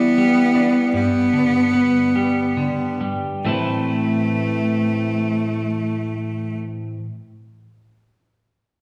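Bathed in a wet recital-hall reverb, this melancholic, brooding rock excerpt in A minor moves in a slow 6/8 at 44-53 BPM, easing back over its first 3.5 seconds as a biting, intense bowed cello with vibrato carries the melody between A3 and B3 against twangy, compressed arpeggios from a clean, picked twelve-string electric guitar, both up front, passing from Em7 and G to Amadd9 at 3.5 seconds before the cello stops at 6.6 seconds and the guitar at 7.0 seconds.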